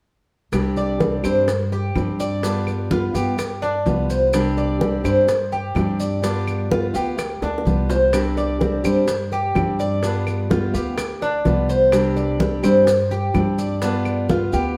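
This is Cuban son in the guajira style, a warm, danceable excerpt at 126 BPM in a straight 4/4, cut from a longer piece and moving between Csus2 and G7 chords throughout. Up front, the Cuban tres plays metallic, picked arpeggios on its double strings, some of them octave-doubled, while a fingerpicked steel-string acoustic guitar with an auditorium body supplies the accompaniment. Beneath them, a pizzicato upright bass on gut strings gives a dark, thumpy, woody low end. The congas, bongos and claves sit in the background: bright, thin-skinned congas struck with hard hands, tight high-tuned bongos played with soft hands, and close, dry claves. Grainy, mellow maracas are miked close, and a drum fill comes from 7.4 to 8.1 seconds. The band plays live in one room, and a stone room reverb gives the sound a lively, resonant space.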